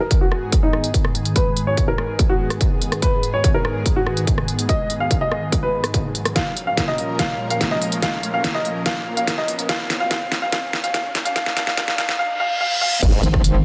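A half-time 4/4 pulse at 144 BPM drives this aggressive, chaotic heavy wobble dubstep build-up in G# dorian, cut from a longer piece, with an up-front distorted electronic kick and a layered dubstep kit of deep snare, crisp hats, rim clicks and crash, plus a drum fill from 6.4 seconds. A worn, intimate baby grand piano carries the melody through a low-pass filter sweep and delay, while a lush, bright, detuned unison pad holds sustained chords under chorus, phaser and sidechain pumping, moving from G#m to A#m and back; very quiet risers and a reverse cymbal lead into the impact. At 13.0 seconds the impact lands as a saturated formant-sweep wobble bass gives way to a metallic FM wobble bass, both with overdrive and chorus, in a dense, heavily limited master with light reverb.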